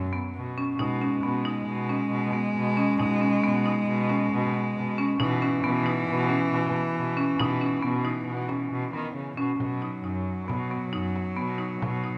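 Set in an uneven 5/4 with a straight feel, this short piece of contemporary chamber music, cut from a longer work, has a shimmering, playful mood. A marimba struck with hard mallets spins woody, bright arpeggios from the start, its close, dry sound sitting full and percussive in the blend. Two bowed cellos play throughout: one carries a second line with a soft attack, sul tasto tone and a nasal, floating purity, while the other holds the bass with light vibrato and an earthy bite, both up front. A small frame drum played with soft hands enters at 0.8 s, very quiet and close. The harmony moves from Bsus2 to E/B and settles on B when a new section begins at 9.6 s. Everything sits in the wet reverb of a recital hall or church, and the recording has a somewhat dulled top end.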